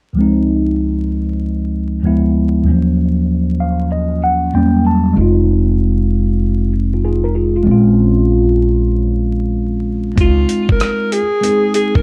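A lazy swung groove in 4/4 sets the pace for this smoky, mellow jazz-hop cut from a longer hip hop piece. A mellow tine electric piano carries the chords from the start, its clean tone colored by a phaser and heard as if through built-in speakers, and it plays a fill at 3.3 seconds. A pizzicato upright bass with a woody, thumpy sound comes in at 5.2 seconds and holds the low end until shortly before the close. At 10.2 seconds a dusty, sampler-style drum kit arrives with gritty, overdriven hi-hat, thumpy kick and rim click, while an alto saxophone takes the lead with subtone, vibrato, scooped notes and a smooth top. The production is dark and warm with vinyl crackle and a moderate studio reverb, and all four parts sit up front.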